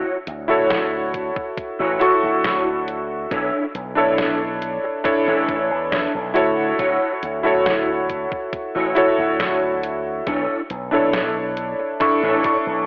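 Dreamy and faded, this slow 69 BPM vaporwave excerpt in D major drifts between Dmaj9 and Bm11, featuring an up-front, clangy warm electric grand piano with analog chorus and tape echo, alongside a dark, mellow electric guitar riff tucked in the background through ensemble chorus, a low-pass filter and tape echo, a bright, punchy slap bass with an envelope filter, a detuned 8-bit digital drum machine with an overdriven fat snare and hi-hat, and a thumpy electronic kick drum entering at 1.1 s, set in a plate reverb with a cassette, telephone-like tone before a clean electric guitar fill at 12.4 s.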